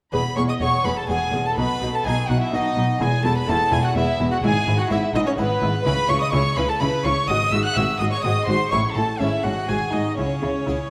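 Classical baroque-style concerto movement in 3/4 at 126 BPM, brilliant and festive, moving from E major into C# minor at 5.9 s in this short cut from a longer piece. A close, up-front solo violin with rich gut-string tone carries the melody over a chamber violin section doubling it in the background, a second violin section line, a dark, nasal viola section, an airy Italian-style harpsichord with two sets of strings, and a reedy cello and double bass section on the bass. The period-style strings sit in a wet recital hall with a dark, warm production, the lower strings and violas dropping out at 10.7 s just before the close.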